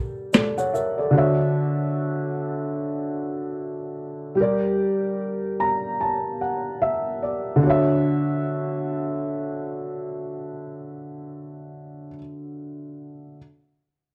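Dreamy and cosy, this lo-fi hip hop excerpt centres on a soft, boxy felt-muted upright piano with cassette tape colouring, playing swung accompaniment up front and adding a fill at 5.2 seconds, while a vintage brush drum kit of finger snaps, hi-hat, shaker and smooth snare appears only briefly from 0.3 to 1.0 seconds, within a dark production and moderate studio reverb.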